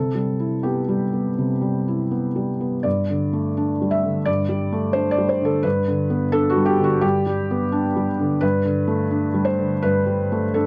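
A felt-muted upright piano plays alone through this short excerpt of neoclassical minimalist music, its soft, mellow tone sitting up front in the mix. The mood is intimate and hopeful, moving at roughly 81-88 BPM in 4/4 with a rubato feel in G major. The piano spans from G2 to E5, drifting through Cmaj7, Gsus2 and Gmaj9 chords before returning to Gsus2 at 8.4 seconds. The sound is dry and close, in the manner of a 1970s studio recording, with little reverb around the muted hammers. Cut from a longer piece, the passage lasts 10.7 seconds.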